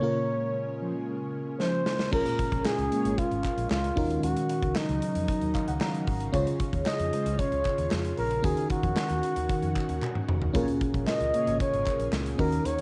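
A breathy, intimate flugelhorn carries the melody up front over a lush FM electric piano, an ethereal airy pad and mellow synth brass stabs in this nostalgic, uplifting 1980s-style pop excerpt at 114 BPM, with a big rock drum kit and its punchy kick entering at 1.6 seconds, a dark, round muted electric bass at 2.1 seconds and very quiet hollow handclaps at 2.7 seconds, all colored by cassette tape and a moderate spring reverb in a small home-recorded room as the chords move from Bbm7 through Ebm7 and Db.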